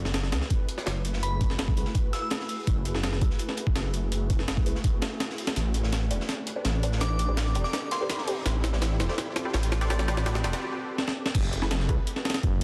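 A thick, menacing detuned saw bass sits up front in this nostalgic, raw drum and bass and jungle cut, beside a gritty, compressed sampler-style breakbeat kit with a thumpy kick and high-tuned snare, while a darker, saturated acoustic break rolls along in the background. Muted dub chord stabs with phaser, subtle chorus and dub echo sweep through a filter as a very quiet riser builds, and a glassy FM synth bell rings out in two short phrases. Drum fills lead into a break at 10.6 seconds before the drop lands at 11.3 seconds, all framed by vinyl crackle and a dense, heavily limited master.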